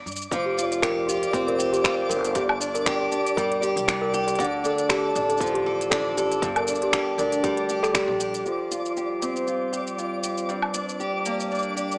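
Heard through a small-speaker sound with a moderate echo-chamber reverb, this wistful, delicate folktronica excerpt carries a light swing. A picked steel-string parlour guitar sits up front with fresh-stringed arpeggios softened by a low-pass filter, while a woody, thumpy pizzicato upright bass and a tight, tape-toned electronic kick anchor the low end. An overdriven organic electronic kit adds crisp hi-hats, finger snaps, shaker and woodblock, and a twinkling granular texture with an octave-up shimmer sparkles high above throughout. A worn celesta with soft felt hammers plays a sweet, slightly out-of-tune second line through digital delay. By 8.5 seconds the bass, kick and celesta have dropped away as a filter sweep moves across the guitar, and a warbly, detuned, lo-fi pad with chorus arrives at 9.1 seconds with nostalgic sustained chords.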